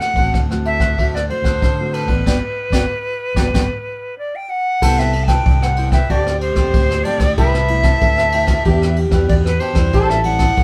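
A playful, lively samba-choro excerpt opens with an airy, reedy concert flute carrying the melody up front over a roomy brushed drum kit with dark cymbals and a boomy kick, crisp cavaquinho in the background and full-bodied thumb-plucked nylon-string guitar, joined almost at once by a round, punchy electric bass, with a band accent at 2.3 s and a nasal, metallic lap resonator guitar adding a slide second line from 4.8 s as the band plays live together in one room.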